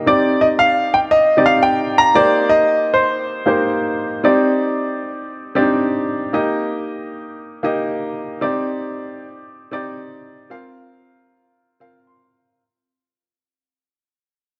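A plate reverb of moderate depth gives this short pop excerpt a roomy sheen, while two pianos sit up front in the mix. At 115 BPM in a straight 4/4 and in C minor, the mood is dramatic and nostalgic. A warm, natural-sounding baby grand carries the accompaniment throughout, moving through Cmadd9 and Cm7 and then Eb and Bbsus2. A clear concert grand with a worn edge, deep bass and short sustain plays the melody only from 0.1 to 3.7 seconds, its notes trailed by tape echo. After 4.2 seconds the recording fades out, and a grand piano fill arrives at 11.6 seconds before the cut at 12.6 seconds.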